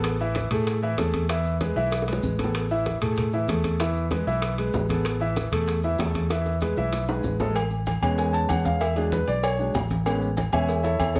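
A straight 4/4 salsa groove at 192 BPM drives this festive, sunny excerpt in A major, cut from a longer piece and lasting just over 11 seconds. A clear, smooth concert grand piano with a vintage character and deep bass sits up front in the accompaniment, ranging from E3 to A5, alongside a round, punchy fingered electric bass that holds down the low end between A1 and A2. A percussion section fills out the rhythm: ringing metal-shelled timbales and agogo bells in a live room, low-tuned congas with a bright, thin skin and tight high-tuned bongos and cowbell sitting in the background, and grainy, mellow maracas kept close and dry. Drum fills break in around 1.9 seconds and again from 6.3 seconds, setting up the shift at 7.6 seconds where the piano moves into a solo over Amaj7 and E7 chords. Light reverb gives the ensemble a touch of space.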